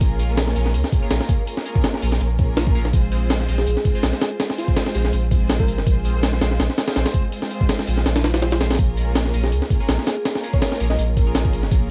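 A gritty, sampler-style breakbeat kit leads this frenetic, raw drum and bass cut in Bb minor, driving at 164 BPM with a light swing on the sixteenths, its thumpy kick, high-tuned snare and hi-hat pitched up, compressed and sitting up front with a tape-warm grit. Beneath it, a deep, round sub bass with a soft triangle-and-square tone and gentle tube saturation holds the low end just as prominently. A rich, bowed studio string section sustains chords with expressive vibrato and a soft attack, colored by cassette tape, moving from Bbm7 to Fm at 2.9 seconds and back to Bbm7 at 8.8 seconds. In the background, a nasal, band-passed sawtooth chord stab plucks bright, decaying hits through phaser, lush chorus and dub echo. A bell-like FM electric piano adds sparkling, mellow melody phrases between 3.6 and 6.0 seconds and again from 9.4 seconds, treated with chorus, tremolo and dub echo. The whole fragment, cut from a longer piece, has the dry, close sound of a home cassette recording with little reverb.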